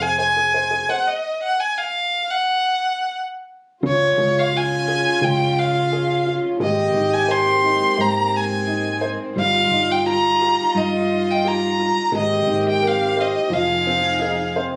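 A rich, bowed violin sits up front, carrying the melody with smooth, even vibrato through this reflective, intimate acoustic folk-pop ballad, cut from a longer piece. Beneath it, an upright piano with a woody, vintage tone and short sustain plays the accompaniment. A dark, round hollow-body electric bass, fingered and amped, holds the low end, and a stop falls between 1.0 and 3.8 seconds. From 3.8 seconds a solo French horn adds a distant, roomy second line in classical style. At the same point a chamber string section, soft in attack and played sul tasto, lays warm sustained chords in the background as the harmony moves from Db through Abadd9 and Ebadd9/G before settling on Fm7. The sound carries light reverb, recorded on a phone in the room and touched with studio reverb.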